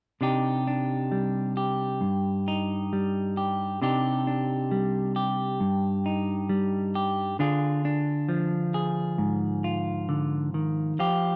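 A dark, clean semi-hollow electric guitar, fingered and up front with a touch of spring reverb, plays heartbroken, intimate folk accompaniment in C minor at a slow 67 BPM from 0.2 seconds, moving from Cmadd9 to Ddim at 7.4 seconds in a dry, close 1970s-style studio sound before this cut-short fragment ends at 11.4 seconds.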